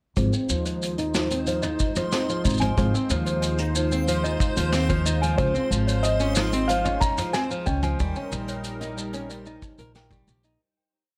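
This delicate, pastoral folktronica piece in Ab major at 92 BPM opens with a fingerpicked flamenco guitar playing an arpeggiated sequence through a low-pass filter sweep, a woody pizzicato upright bass carrying a dub-style line up front, a soft, tight kick and a dark brushed kit of shaker, closed hat, low tom and snare, while a detuned sawtooth pad with chorus and a clanky, slightly out-of-tune toy piano step sequence with tape echo and plate reverb sit in the background. A reversed, granular swelling texture holding a high note enters at 1.3 seconds, and at 5.4 seconds a muted, intimate felt-muted upright piano adds a motif-based melody with 12-bit sampler grit and digital delay as the chords move from Dbmaj7 to Eb. The piece fades out from 7.1 seconds, leaving a dreamy glow in light reverb.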